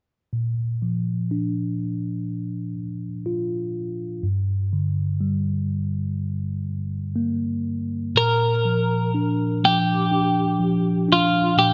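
A bright, twangy twelve-string electric guitar carries the melody from 8.2 seconds, its clean, picked and compressed tone sitting up front over the accompaniment. Before it enters, a mellow tine electric piano plays alone from 0.3 seconds, its clean, direct sound moving from B-flat to G minor and back to B-flat. This tender, emotional pop fragment at a slow, straight pace in four is cut from a longer piece, with light reverb and a soft, rounded top end.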